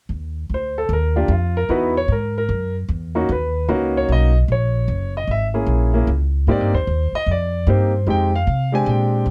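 A clear concert grand piano carries the melody up front with deep bass and long sustain, over a woody, pizzicato upright bass on steel strings that begins at 0.1 seconds, in this warm, playful swing jazz fragment at 151 BPM, whose dry, close-miked sound moves through rich chords such as Emaj9#11, Bmaj9 and a rootless Abmaj9.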